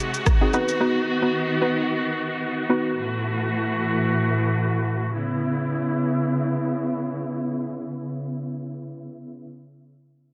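Mellow and sultry, this afrobeats fragment in C# minor drifts in free time, carried by a smooth, bowed string section holding sustained chords with vibrato from the opening through 9.4 seconds. A deep-kicked electronic drum kit with rim click, shaker and a softly clipped, tape-toned snare appears only briefly at the start. A dark, round pluck with a fast attack, decaying tail and chorus shimmer adds accompaniment from 0.4 to 2.9 seconds, all set in a lush hall reverb within a dense, heavily limited, low-passed mix that moves from G#7 and B through F#m7/A to C#m7.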